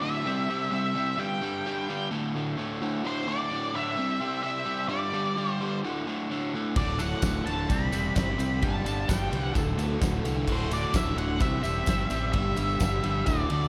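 A big arena sound with lush hall reverb and a faint mains hum frames this driving, sunny classic rock excerpt. An up-front, double-tracked overdriven guitar riff with slapback echo and a dark octave-fuzz lead melody open it alone. At 6.8 s a big rock kit with punchy kick, fat snare and bright cymbals arrives, along with a growly overdriven fingered bass, a jingly tambourine in the background and a very quiet, shimmering twelve-string acoustic, while a compressed slide guitar adds a brief second line at 9.6 s.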